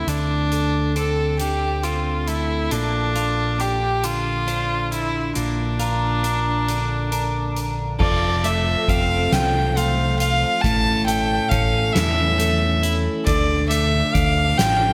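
Set in a lush hall reverb, this brooding, cinematic post-rock passage is cut from a longer piece and moves at a slow 46 BPM in a straight 6/8, in D minor. An up-front solo violin carries the melody with a rich, biting, slightly nasal, earthy and boxy tone, light vibrato and an airy bow, touched with slapback echo. Beneath it, a clean, compressed twelve-string electric guitar picks arpeggios. A bright, twangy electric guitar through a small old amp picks higher arpeggios in the background with a slightly broken-up, lo-fi character, and both guitars carry slapback echo. A fingered electric bass gives a round, punchy, amped low end, while a drum kit played with soft mallets adds a boomy kick, a medium-tuned snare, hi-hat and dark crash cymbals. At 8.0 seconds, a mellow French horn section enters in the background with soft-attack sustained chords and a vintage, classical feel, as the harmony moves from Dm7 and Bbmaj7 through F and A to a closing Dmadd9.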